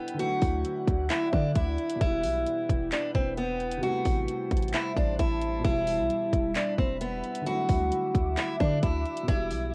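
Hip hop trap cut from a longer piece, dark and eerie, moving at 132 BPM in a half-time 4/4 feel through a Dadd9, Em, Am7, Em, Dadd9 progression. A boxy, picked parlour steel-string acoustic guitar carries the up-front melody through cassette tape and tape echo, over a mellow, vintage concert grand piano whose audible action noise adds intimacy, while a glassy, ethereal FM pad with slow attack, ensemble chorus and its own reverb sits in the background holding sustained chords. An electronic trap kit of hard-clipped kick, bright hi-hats and handclaps, re-recorded in a small room, punches up front from 0.1 seconds, and a deep, boomy 808-style sine bass with a noise layer, fast attack and decaying notes joins at 0.4 seconds, all wrapped in the character of a home cassette recording with moderate studio reverb.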